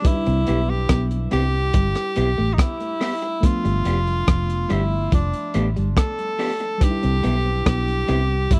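A clear tenor saxophone with light vibrato and tape echo carries the sweet, romantic melody up front in this short lovers rock reggae excerpt, over a gritty, muffled breakbeat kit of punchy kick, hi-hat and rim click, a round, foam-muted fingered bass and a twangy clean guitar riff that both enter at 0.3 s, slightly broken-up guitar stabs from a small old amp, and a soft, chorused FM electric piano glowing in the background, all moving from Cmaj7 to G7 and back in a dry, close 1970s-style small room.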